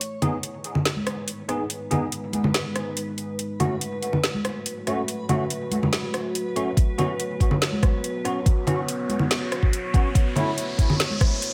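Set in a moderate digital echo-chamber ambience, this brooding, dark deep dubstep excerpt moves in a half-time feel as a deep, detuned sawtooth pad holds slow-attack chords over a G#m, F#m, Bsus2 and A progression, while a reversed, dreamy swelling texture sits in the background. Bell-like, clean stabs from a tine electric piano and bright, vintage congas both carry dub echo, riding over an up-front, overdriven garage kit of metallic hats, rim click and a woody snare. The whole passage acts as a build-up, with a knocking electronic kick entering at 6.8 seconds and an electronic riser arriving at 8.4 seconds.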